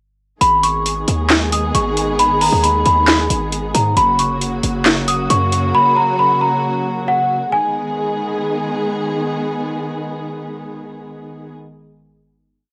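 Recorded at home on cassette with a snug small-room ambience, this brooding, melancholic trap piece sets a slightly out-of-tune, bell-like celesta loop with tape echo over dark, sul tasto strings, a punchy 808 bass with long sub notes and a half-time kit of metallic hi-hats and a sharp snare layered with handclaps; the drums and bass drop away by 5.7 seconds, the celesta stops at 8.8 seconds, and the strings sustain the closing G#m chord alone until 11.5 seconds.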